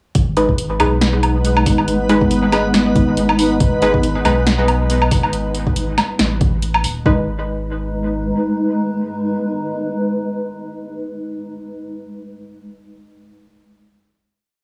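Meditative and heavy, this short deep dubstep piece in G# minor at 139 BPM rides a swung half-time beat of overdriven kick, punchy snare, hats and low woodblock with a cassette-tape grit, as a round, mellow sub bass plays chopped phrases under muted, detuned chord stabs with chorus and dub echo, a cloudy granular pad drifting through to 11.1 seconds, and a reversed, dreamy high texture swelling between 1.1 and 5.3 seconds before the drop gives way to a final chord at 7.1 seconds, all in a light reverb.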